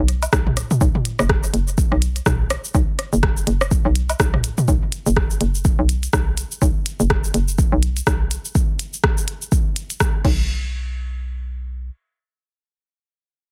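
A dry, close sound opens this hypnotic, sparse minimal techno excerpt at 124 BPM, with a swung 16th-note feel and a drop that runs from the start to 10.5 seconds. A hollow, bouncy, punchy FM bass with a knocking fast attack and a decaying tail sits up front with tube saturation and sidechain pumping. An overdriven deep electronic kick and a clicky minimal kit of hi-hat, rim click, shaker and crash, both re-recorded in a large room, carry the groove to 10.4 seconds, while a tape-warm organic electronic kit of rim click, toms and woodblock with delay adds colour only until 4.7 seconds.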